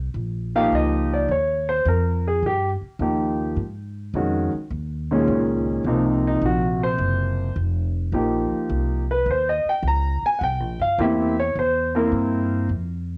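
A woody, growly upright bass opens this relaxed, swinging jazz piano trio excerpt, its dark pizzicato notes sitting up front. At 0.6 seconds a warm grand piano with a cassette-tape colour enters to carry the melody as a solo over rich extended chords such as Eb9 and Ab13, closing on C7. A wet studio reverb and the character of a home cassette recording round out the sound.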